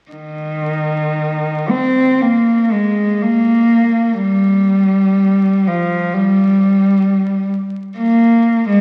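A single cello carries this brief classical fragment on its own, playing freely and expressively with a rubato feel that gives the line room to breathe. Its tone is soft-edged and airy, bowed sul tasto with light vibrato and gentle attacks, and it sits close and up front, giving the sense of one player performing intimately. The line stays in a low-to-middle register, moving between Eb3 and C4 across roughly 8.8 seconds. A moderate concert hall reverb lends a lingering bloom around the notes, while the crackle of a very old 78 rpm record colors the whole sound with an aged patina. The result is nostalgic and serene, a quiet glimpse cut from a longer piece.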